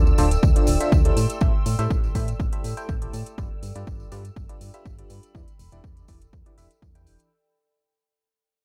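Energetic yet bittersweet, this short piano house excerpt runs at 122 BPM in 4/4 over Dm7, Am7, G7 and Em7, fading out across its 7.3 seconds. A biting, barking FM electric piano riff with chorus, phaser and tremolo rides over a round, dark FM bass carrying a filter sweep, while a tambourine set in the background enters at 0.1 seconds, metallic hi-hats with overdrive follow at 0.2 seconds, and a punchy, overdriven kick arrives up front at 0.4 seconds. Beneath them, a silky analog string pad with ensemble chorus and sampler grit holds sustained chords, and a warbling, nostalgic tape-like pad with phaser and built-in reverb adds texture, both pumping with the sidechain.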